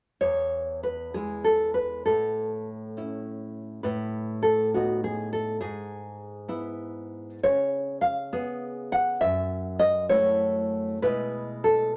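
Sunny and warm, this romantic fragment for solo nylon-string guitar sways in a loose, rubato 6/8, the full-bodied, fingerpicked instrument sitting up front in a moderate studio ambience as it moves through E, A, B7/A, E/G#, C#7 and F#m7 before arriving at E/B near 11.0 seconds.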